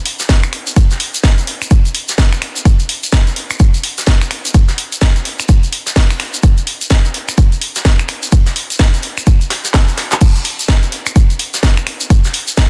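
House groove at 127 BPM in 4/4 with a 61% sixteenth-note swing, bouncy and gritty, built on an up-front punchy electronic kick re-recorded in a small room, a tape-warm garage kit of crash, finger snaps, handclaps, hi-hat and a cracking, softly clipped snare, a big-room acoustic arena kit sitting in the background with filtered, sidechain-pumped hats and a fat snare, and a grainy, mellow tube shaker played close, with a drum fill at 9.7 seconds in this dense, heavily limited cut from a longer piece.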